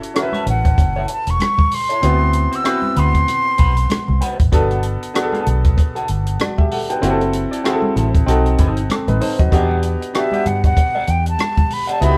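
Cinematic and bittersweet, this excerpt of lush 1970s-style soul moves at 96 BPM in 4/4 with a gentle sixteenth-note swing. A compact cocktail drum kit sits dry and up front, its punchy kick, hi-hat and rim click steering the groove alongside a vintage muted fingered electric bass that sounds dark, round and foam-muted. A clear concert grand piano with short sustain and deep low end carries the accompaniment, while an electric guitar through a small old amp plays a slightly broken-up, picked riff colored by wah. Thick-skinned congas add medium-tuned, close percussion in the background. A breathy, close-miked concert flute with a straight tone and soft attack sings the melody from 0.2 to 4.2 seconds, then returns at 10.2 seconds over harmony that drifts from F#m7 through Gmaj9 and B7b9 to Em9, all within a moderate studio reverb that suggests a band playing live in one room.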